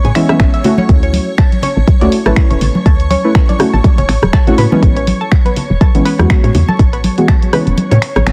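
A swung 16th-note groove at 122 BPM drives this relaxed deep house excerpt in D lydian, with an up-front, layered electronic kick carrying 12-bit grit from 0.4 s until it drops out at 7.4 s, a dry analog drum machine supplying finger snaps, hi-hat and rim clicks, and bright, damped congas played close. A woody, round FM bass with tube saturation pumps under the kick, while deep, mellow chord stabs with chorus, tape colour and analog delay move from Amaj9 to Dmaj9 and back. High above, a sawtooth-and-square analog pluck runs arpeggios through delay and chorus, and a silky string machine holds a soft, sustained pad, all set in light reverb with a dense modern master and vinyl crackle.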